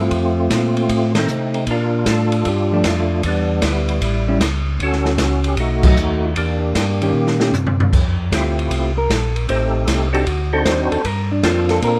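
Close and lightly reverberant, this smoky, soulful soul jazz organ trio swings, with a fat, percussive tonewheel organ carrying the melody through slow rotary speaker, chorus vibrato and plate reverb, while a round, mellow second organ voice with key click handles the bass. An up-front acoustic drum kit with dark cymbals and a boomy kick supports the band accents, and a clean, fingered hollow-body electric guitar joins at 1.2 s to comp through rich, shifting jazz chords. A drum fill at 7.1 s sets up the guitar's solo from 7.9 s, which carries on to the close of this fragment of a longer piece.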